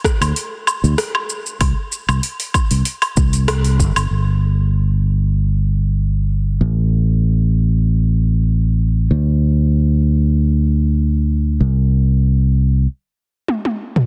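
Wistful and warm, this 96 BPM sunset chillout excerpt opens with a deep electronic kick and an up-front deep house kit of metallic hats, rim click, shaker, toms and woodblock, both layered and overdriven, which fall away by 4.1 seconds to leave a dark, round, punchy fingered electric bass up front until a stop at 12.9 seconds, before a brief drum fill enters at 13.5 seconds, in a dry, dense, heavily limited master.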